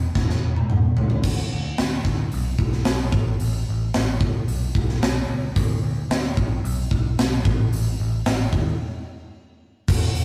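Quiet-loud alternative rock in a bittersweet, restless mood at 111 BPM, this fragment of a longer piece pairs a growly, overdriven picked electric bass with a big, up-front acoustic rock kit of bright cymbals, punchy kick, snare, hi-hat and toms that opens with a fill at 0.2 seconds and reaches a break at 8.8 seconds, all captured with light reverb in a rough rehearsal-room sound.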